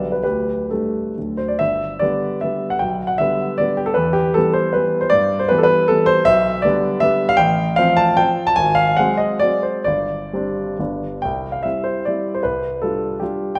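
Graceful and proud, this brief romantic classical passage is a triple-time dance with dotted rhythms, played with flexible rubato on a solo grand piano that sounds warm and up front, with short sustain across a range from G1 to A5. The harmony opens on a suspended Dsus4 settling to D, moves home to G at 1.6 s, takes a colourful turn through F/A and Ab7, and closes on C and G7/C from 11.2 s. A moderate scoring stage reverb surrounds the piano with a sense of space.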